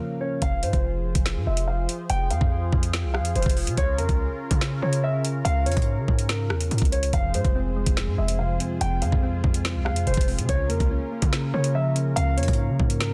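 An overdriven drill drum kit sits up front, its knocking kick, woody snare, metallic hi-hats and rim clicks entering at 0.4 seconds alongside a punchy, heavy 808-style bass with a sine body, a noise layer and a fast, decaying attack. This cold, menacing drill cut runs at 143 BPM in 4/4 with a half-time feel, sitting in F minor and tuned slightly flat to A4 = 435 Hz. A dark concert grand piano carries the melody throughout, its smooth, vintage tone and short sustain trailed by tape echo. Beneath it, a detuned sawtooth analog pad holds long, chorused chords with a soft attack and a moving notch. Round, triangle-and-sine electric-piano-like synth keys with a filter sweep and chorus appear briefly at the opening and then return at 7.1 seconds, as the harmony cycles between Fm and Db6. The mix is dense and heavily limited, set in a digital ambience, and the passage is cut from a longer piece.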